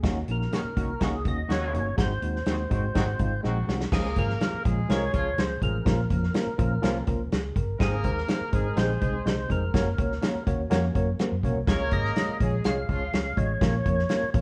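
Warm and uplifting, this 14.4-second cut from an uptempo 1960s-style soul tune at 124 BPM in Db major sets a lightly overdriven, fat tonewheel organ melody with third-harmonic percussion and a slow rotary speaker over a clean tine electric piano, a dark, round foam-muted electric bass, an up-front acoustic kit with a punchy kick and a drum fill from 3.4 to 3.9 seconds, and a clear vintage horn section in octave doubling, all caught live in one room with moderate reverb and cassette-tape character as the chords move from Ebm7 and Ab7 into a Db, Bbm, Ab, Gb progression.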